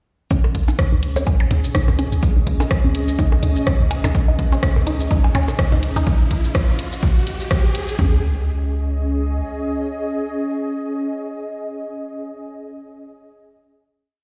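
Heard through a big sound system in a bare room, this short minimal techno piece is bathed in large studio reverb and has a hypnotic, quirky pull. Up front, a punchy analog drum machine drives a four-on-the-floor kick with floor toms, joined by a deep sine sub bass with a pitch-drop attack, tube saturation and a pumping dotted rhythm. An overdriven garage kit adds programmed closed hats, rim clicks and shaker, while percussion blips of bongos, woodblock and conga click in cross rhythm through dub echo until about 6.0 seconds. In the background, a juicy, squelchy sawtooth pluck repeats a 7-step loop that drifts against the bar, colored by chorus, phaser and cassette tape, as a filter sweep moves over it until about 6.1 seconds. A slow-attack, ethereal pad with ensemble chorus shifts its chords beneath, and a riser from 1.7 seconds pushes the build to 8.0 seconds, where the pad's final chord rings out to the close.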